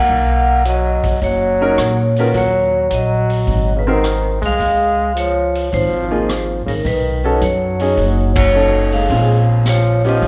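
Small-group swing and bop jazz at 107 BPM, smoky and swinging, with ringing, bright vibraphone carrying the melody over a forceful trombone second line and thumpy, woody upright bass from the start, a vintage drum kit with dark cymbals and a high-tuned snare joining at 0.7 seconds, clear concert grand piano accompaniment entering at 1.6 seconds, chords moving from Bmaj7 through Ebm7, Ab7, Db and B9 to Bbm9, a band accent at 8.3 seconds, and a wet concert hall reverb around it all in this short cut from a longer piece.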